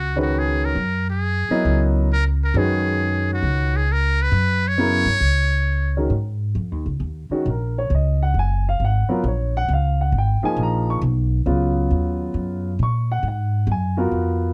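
A muted trumpet, buzzy and thin with light vibrato and a soft attack, carries the solo melody up front until 6.0 s in this intense, spiritual jazz excerpt, swinging at 135 BPM over a suspended F#9sus4 chord. Pizzicato upright bass with a woody tone and an upright piano with long sustain and a natural sound carry on after the trumpet stops, shifting to G#9sus4 and a G# dorian colour from 6.1 s. The production is dark and warm, with light reverb.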